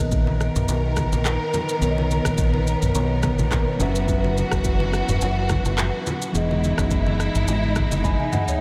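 Afrobeats at 106 BPM in B major, this sunny, breezy fragment of a longer piece rides a gentle sixteenth-note swing through Bmaj7, F#7sus4 and Emaj7. A mellow tine electric piano with analog chorus carries the accompaniment, while a lush bowed string section holds sustained chords with vibrato underneath. A deep dub fingered electric bass sits low and round, dark and amped, and drops out at 8.2 seconds. The electronic afro-pop drum kit, led by a deep kick, mixes handclaps, rim clicks, shaker and toms, closing with a drum fill from 8.0 seconds, and very quiet low-tuned congas with a thick-skinned, vintage tone add hard-handed texture. A huge ambient reverb soaks the mix in a dreamy haze.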